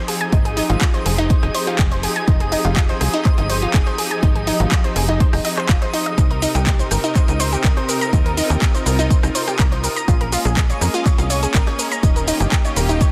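A punchy, overdriven electronic kick drum sits up front in this short progressive house excerpt, driving a straight 4/4 pulse at 123 BPM in F minor with an expansive, forward-moving mood. Beneath it, a tight, nasal sequencer bass with a sawtooth edge and fast filter pluck runs from Eb1 to F2, pumping against the kick, while a house drum kit adds bright hats, handclaps, rim clicks and shaker, all overdriven. A round analog pluck with detuned oscillators, a moving notch and a filter sweep plays arpeggios through chorus and digital delay, and a clear, biting symphonic string section holds lush bowed chords with vibrato, both breathing with sidechain pumping. High in the background, a twinkling granular texture shimmers on Eb6 in its own reverb. The harmony moves from Fm7 to Cm7 at 6.2 seconds, then through Bbm7 to Eb7, all in a dense, heavily limited modern mix with a light room reverb.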